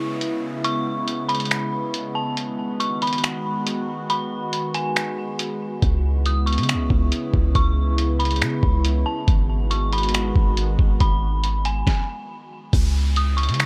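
This hazy, melancholic cloud-rap excerpt moves in a half-time 4/4 feel at 139 BPM in C# minor, driven by a compressed, muffled, sampler-style drum kit of thumpy kick, medium-tuned snare, hi-hat and finger snaps, re-recorded in a small room and placed up front. Over it, a warbling, nostalgic tape-like pad holds slow-attack sawtooth and triangle chords through chorus, phaser and its own reverb, cycling between C#m7 and G#m7. An eerie, inharmonic FM bell carries the melody high above, its detuned, full-bodied tone softened with chorus and delay. A deep, boomy 808-style bass with a sine core and noise layer arrives at 5.8 seconds, when the opening break gives way to the full groove. An electronic downlifter sweeps through the first few seconds and returns near the end after a brief stop at 11.9 seconds, all set in light reverb.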